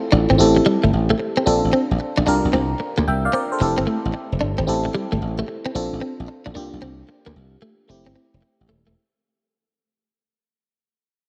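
A dark production sits under a moderate plate reverb, and this short cut from a longer R&B piece fades out from 0.4 seconds to its close at 9.0 seconds. The groove is bouncy and punchy, with a swung sixteenth-note feel in 4/4. A dry, bright slap bass, thumbed and foam-muted, sits up front in the low register, while a glassy FM electric piano with a fast, bell-like attack that then decays and a faint noise layer carries the accompaniment through chorus and phaser. A clean, compressed electric guitar, picked and recorded direct with analog chorus, plays a riff in its lower-middle range. The harmony moves through Am7, Bbmaj9, C7sus4 and Fmaj7, and the cycle repeats once.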